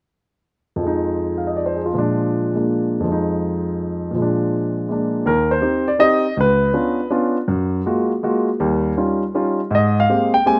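Playful and sophisticated, this short excerpt of swinging jazz waltz in Eb major moves at 162 BPM in 3/4, with a solo grand piano playing alone from 0.8 to 10.6 seconds across a range from Db2 to Ab5. The piano sounds polished and present, sitting up front with long sustain under light studio reverb in a rough home demo mix. It opens by alternating Fm7 and Bb7, then shifts at 5.3 seconds to a richer passage through Eb6, Db7b9, Gbmaj9 and Eb9 before landing on Abmaj9.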